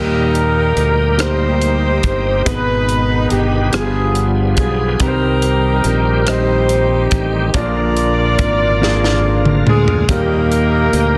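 Slow gospel in a straight 6/8, uplifting and reverent, where a mellow, tight horn section and a warm alto saxophone with vibrato and slapback echo carry the melody over clear, intimate grand piano with audible action noise, a bright tonewheel organ on a slow rotary speaker in the background, a growly, up-front fingered electric bass, and a crisp drum kit with a high-tuned, softly clipped snare entering at 0.4 seconds and playing a fill from 8.8 seconds, all in light studio reverb with a dense, heavily limited modern master.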